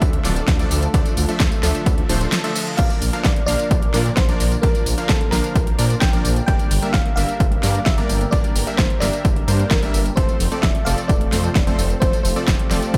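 Light reverb and digital ambience frame this uplifting, triumphant festival progressive house excerpt, driven by an overdriven, punchy electronic kick up front and a layered dance kit with a huge snare, metallic hats, crash and tambourine. A bright, detuned supersaw stab riff pumps with sidechain and trails delay, over a thick, mellow chorused saw bass that also pumps and a very quiet, lush pad sustaining chords through Dm, Bb, Gm and F. After a faint reverse cymbal at 2.0 seconds, a sparkling, bell-like FM electric piano carries the melody from 2.8 seconds, coloured by chorus, phaser and delay.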